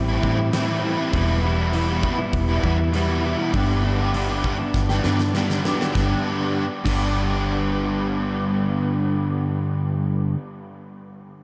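A dark, compressed clean electric guitar with reverse reverb opens alongside a round, foam-muted vintage bass, joined at once by an up-front crunchy overdriven guitar with ensemble chorus and a huge arena drum kit with a fat snare and punchy kick, whose fill at 4.7 seconds leads into a brief shift to G at 6.0 seconds before the drums stop at 7.0 seconds, all soaked in a vast, dreamy reverb that gives this blissful, hazy shoegaze and dream pop excerpt its floating glow.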